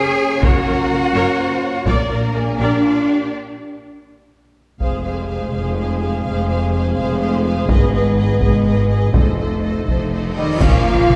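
Dramatic and epic, this cinematic orchestral film-score passage in F dorian moves at 83 BPM in a straight 6/8, with a focused violin section carrying the melody over darker, expressive second violins, intense violas, background cellos and smooth, even double basses, the strings bowed and lush with vibrato, while a mellow French horn section holds sustained chords and a heavy-sticked taiko ensemble drives the rhythm around a break, before a huge, bright cymbal swell and sub drop at 10.2 seconds leads into a very quiet, pure flute group, stabs from a distant solo trumpet and an impact at 10.6 seconds from dark clash cymbals and concert bass drum, the whole set in a wet scoring-stage reverb heard from further back with a faint mains hum.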